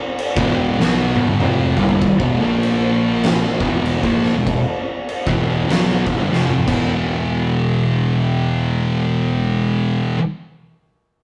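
Stoner and doom metal in E minor at 98 BPM with a swung, brooding heaviness, this rough rehearsal-room excerpt pairs an oversized low-tuned drum kit with fat snare, punchy kick, dark cymbals and fills at 0.8 and 6.3 seconds, two thick fuzz guitars playing a distorted picked riff from E2 to B3 (one dark and up front, the other warm in the background), and a growly overdriven fingered bass beneath, as the drums drop out at 6.8 seconds and the guitars ring on to 10.2 seconds.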